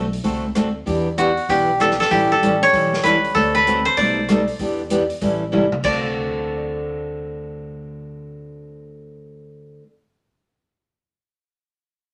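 A koto carries the melody up front, its fingerpicked tone dry and woody, giving this cheerful, down-home slice of country western swing an unexpected lead voice at a brisk 193 BPM in 4/4 with a 63% eighth-note swing. Behind it, a picked steel-string acoustic guitar supplies accompaniment with an auditorium-sized body, moving through jazzy changes such as D9, Em7, A9 and B7alt in D mixolydian. A pizzicato upright bass sits low and thumpy beneath, its dark steel-string sound anchoring the harmony. A swinging big-band drum kit, airy and polished with dark cymbals, a medium-tuned snare and a punchy kick, drives the groove until a drum fill at 5.5 seconds leads into a new section at 5.8 seconds, after which the kit drops out. The strings continue to 9.8 seconds, bathed in a wet studio reverb, as the passage ends, cut from a longer piece.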